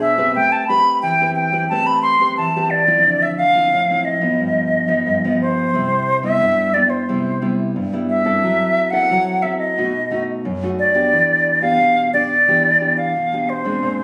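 Samba in C major at 89 BPM with a playful, sunny mood, cut from a longer piece. Up front, a reedy, airy silver concert flute carries the melody with tongued notes, vibrato and a close-miked plate-reverb sheen. A full-bodied, fingerpicked nylon-string guitar accompanies throughout, with audible finger squeak, moving through chords such as Am9, Cmaj7 and B7, all heard as if captured on a phone in a compressed, club-like room.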